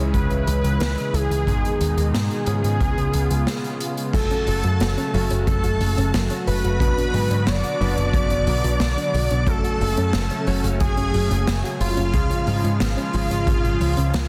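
A dense, heavily limited mix with light small-room reverb frames this driving, nocturnal synthwave excerpt at 90 BPM in straight 4/4, where an overdriven, foam-muted picked bass sits punchy and up front beneath a boomy, airy kick and a polished street-band kit with dark cymbals, snare and hi-hat. A thick, detuned, wave-folded unison lead carries the melody through cassette-tape grit and digital delay, while a smooth sawtooth pad with chorus, tremolo and sidechain pumping and a vintage electric grand piano with clangy bass and tape echo hold the background with sustained chords and stabs. After a brief break at 3.5 s the music settles into F# minor at 4.1 s, where a shimmering string-machine violin line and a very quiet, nasal pluck playing arpeggios join in.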